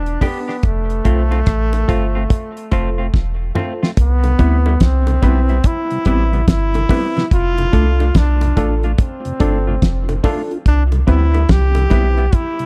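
A dark, close-sounding roots reggae excerpt with an uplifting mood, where a brilliant trombone with light vibrato carries the melody through tape echo over a round, deep dub sub bass and a damped 70s drum kit with a fat snare and tight kick up front, while a clean semi-hollow electric guitar with its own tape echo, barky electric piano stabs with fast tremolo in the background, very quiet high-tuned bongos and, from 4.2 seconds, a soft, flute-like tonewheel organ on slow rotary all sit beneath.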